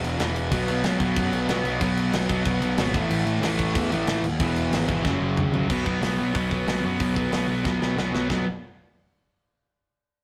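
A bright, overdriven electric guitar and a fuzz-laden picked bass that growls underneath are up front from the start of this short, rebellious punk rock excerpt at 185 BPM in 4/4, joined at 0.5 seconds by a sludgy second guitar sitting further back. A tight metal drum kit with crisp cymbals, a medium-tuned snare and a punchy kick drives the straight feel, throwing in fills at 5.1 and 7.7 seconds as the chords move from E5 through B5, A5 and F#5. The whole thing sounds rough and raw, like a rehearsal room with a stony reverb and a gritty tube saturation.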